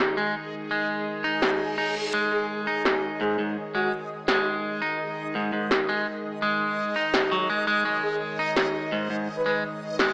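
Dark and heavy, this half-time drum and bass cut moves at 168 BPM in 4/4, tuned to A4 = 442 Hz and built over a G#5 chord. From the opening, a tense, string-like bowed drone holds sustained chords with vibrato and its own reverb, while an up-front clean electric guitar picks twangy arpeggios through a low-pass filter and tape echo. A reversed, dreamy swelling texture joins at 0.3 seconds in the background, its detuned, granular shimmer washed in reverb. The overdriven electronic snare arrives at 1.4 seconds, clanging and up front, re-recorded in a small room, followed briefly by a reverse cymbal effect. A soft, breathy flute-like synth lead carries the melody in two short phrases, the first starting at 2.3 seconds, coloured by chorus, tape echo and vibrato. The whole sits in a lush hall reverb yet keeps a gritty, hardware-recorded character with a small-speaker sound.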